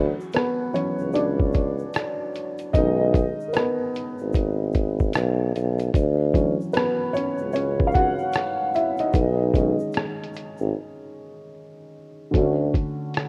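A swung, unhurried 75 BPM lo-fi hip hop groove in 4/4 carries this mellow, nostalgic excerpt, where a dark, woody, slightly detuned upright piano with cassette-tape haze and a low-pass filter takes a solo over Dmaj7 and B69 chords, a vibrato-tinged tuba holds the bass up front, a muffled, pitched-down sampler kit of hi-hat, thumpy kick and rim click adds 12-bit grit, a grainy egg shaker sits quietly in the background until a break at 10.7 seconds, and the whole rough home-demo mix sits in a small, lightly reverberant room.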